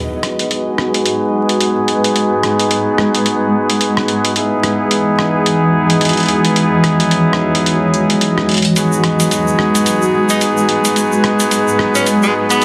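An up-front horn section with light vibrato leads this gritty, funky glitch hop excerpt at 109 BPM in G# minor, its stabs run through a low-pass filter sweep and delay over a swung 16th-note feel as the chords move from G#m7 to Emaj7 and back. Beneath it, a pitched-down, compressed boom bap sampler-style drum kit with soft clipping on the snare sits in a small room, while a moody analog pad with chorus and phaser and a cloudy, evolving granular pad fill the background, inside lush hall reverb with vinyl crackle. A grainy egg shaker joins at 8.8 seconds, and a raspy, close-miked tenor saxophone with scooped notes enters at 10.3 seconds.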